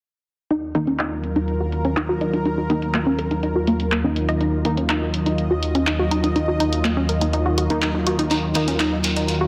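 Driving yet melancholic, this short melodic techno excerpt rests on a single Ebmadd9 chord in a steady 4/4 pulse. A lush, thick unison pad sits up front with sustained chords, while a round, bright analog pluck spins arpeggios through chorus, cassette tape and tape echo, its filter sweeping across the whole passage. A punchy, overdriven analog drum machine drives handclaps and hi-hats, with low-pass filtering on the hats and snare and a filter sweep running throughout. A brassy, wave-folded synth stab punctuates from the background with chorus and tape echo, appearing from 0.7 to 4.8 seconds and again near the end. At 3.2 seconds a very quiet, nasal analog drone creeps in on a low Eb, and a grainy, distant shekere joins at 8.3 seconds, all bathed in a lush hall reverb under a dense, heavily limited master.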